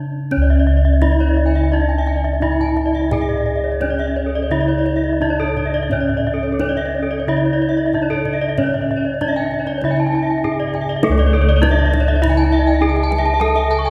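A straight, even pulse in four drives this hypnotic, brilliant slice of Balinese gamelan, cut from a longer piece. It opens with a brief break and drum fill before the ensemble settles in at 0.3 seconds. A bronze metallophone carries the melody in a ringing, airy tone struck with horn mallets, and its paired tuning gives off shimmering beats. Two more bronze metallophones spin bright arpeggios above it, one close-miked, dry and full, the other lighter and more open. Underneath, bossed gongs struck with padded beaters supply a round, mellow bass that sits up front, while a deep kendang stays in the background. The whole ensemble rings out in a reverberant concert hall, and the music moves into a new section at 11.0 seconds.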